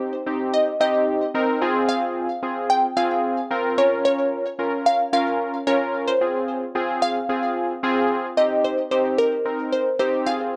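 A straight 4/4 pulse at 111 BPM drives this bittersweet, energetic pop fragment, where a crystalline, detuned wavetable pluck carries the melody with chorus and tape echo over round, warbling vintage analog keys with chorus, both up front in a light reverb, moving through Eb6, Fm and Bbm before returning to Eb6 as a new section begins at 8.4 seconds.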